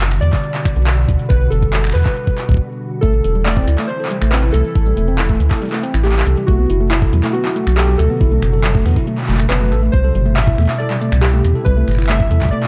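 IDM at 139 BPM in A dorian, this cerebral, eerie fragment of a longer piece moves in a straight 4/4 over chords of Gmaj7, Am, Bm and Cmaj7. A rubbery, nasal square bass sits up front with a bouncy filter pluck. A gritty, pitched-up electronic kick drum thumps beneath a booming analog drum machine whose overdriven finger snaps, handclaps and metallic hi-hats sound re-recorded in a small room. A glassy FM pad holds ethereal sustained chords through ensemble chorus and built-in reverb, while warbling, detuned lo-fi synth keys carry a nostalgic melody through chorus and digital delay. After a short break at 2.6 seconds, a clean tine electric piano enters at 3.0 seconds with arpeggios roughened by 12-bit sampler grit and digital delay. The production is dark with light reverb.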